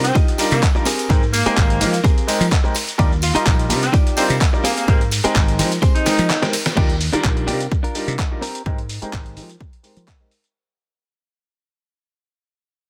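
An overdriven, punchy electronic kick drum sits up front in this sunny, feel-good stretch of filtered disco house at 127 BPM, cut from a longer piece and swinging lightly on the sixteenths. Around it, a gritty sampler-style soul kit with a fat snare, hi-hat, ride, crash, shaker and handclaps pumps under sidechain on its hats, percussion and cymbals, while a tambourine sits in the background under a low-pass filter. A foam-muted thumbed slap bass gives a dry, punchy low end, and a clear baby grand piano with audible action noise, phaser and 12-bit sampler grit carries the Ebmaj9 and Abmaj9 harmony. A bright, clean picked electric guitar riff plays through filter and pumping, and a distant, roomy horn section with light vibrato and tape echo carries the melody until 6.4 seconds. A drum fill and short break lead to a band accent at 6.7 seconds, after which the track fades out beneath a filter sweep, all in a dry space with little reverb.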